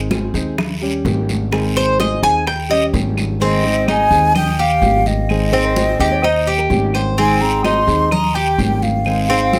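A straight four-beat pulse drives this sunny Cuban son and guajira excerpt, carried by congas, claves, bongos and guiro along with a dark, thumpy upright bass that sits up front. The congas sound bright and high-tuned from a distant, large room, the claves are woody and band-limited, and the bongos are tight with hard hands, these three set in the background, while the guiro rasps close and dry. A full-bodied nylon-string guitar, thumb-plucked and sitting back in the mix, holds the accompaniment over a simple alternation between the tonic and its dominant seventh. The metallic, double-stringed Cuban tres enters at 1.8 seconds with picked arpeggios and stands out in the opening, before a breathy concert flute takes the melody at 3.4 seconds, tongued and expressive with vibrato, lifted highs and a tape echo. A second, fingerpicked nylon-string guitar line appears briefly from 5.5 seconds, and the recording is captured with close, detailed microphones and light reverb.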